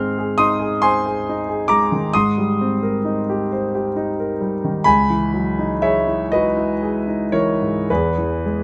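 Impressionist classical solo piano in a dreamy, hazy mood, this brief fragment cut from a longer piece features a clear, up-front concert grand with deep bass and a natural tone, spanning C#2 to E#6 in a rubato 6/8 through drifting harmonies from G#6 to C#m11 and settling on E at 7.9 seconds, all in light reverb.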